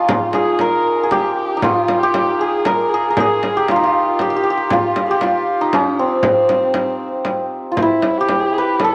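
In a steady triple meter with a straight feel, this short cut from a longer Persian modal ensemble piece sets a hypnotic, longing mood. The hammered santur carries the melody up front, its warm, shimmering, ringing tone giving the line a clear presence. Beneath it, a single bowed kamancheh plays a dark, nasal second line with a woody, boxy character, coloured by vibrato and portamento. A small frame drum enters at 0.1 seconds, its bright, vintage, band-limited sound struck with hard hands. A moderate plate reverb lends the ensemble a sense of space, and the music moves into a new section at 7.8 seconds before the fragment ends at 8.9 seconds.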